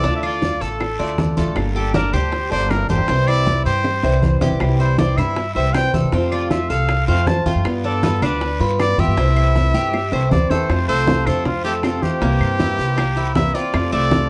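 A clear trumpet with light vibrato leads up front, singing a pop-style solo melody over a sunny, danceable Cuban son and guajira groove in F major at 158 BPM in a straight 4/4. Beneath it, a thumpy upright bass plays pizzicato on gut strings, its woody tone sitting just as far forward as the horn. The bright, metallic Cuban tres picks arpeggios on its doubled strings, while a boxy, swing-style acoustic guitar adds picked accompaniment. Ringing, low-tuned congas drive the percussion, with round bongos played by soft hands, dry claves and a raspy guiro sitting further back, and drum fills arrive at 3.5 and 9.6 seconds. The harmony moves from Dm through Gmadd9, C, F, G7 and C6 before a new section at 10.7 seconds circles between F and C7, all in a dark, warm production with moderate studio reverb, in this excerpt cut from a longer piece.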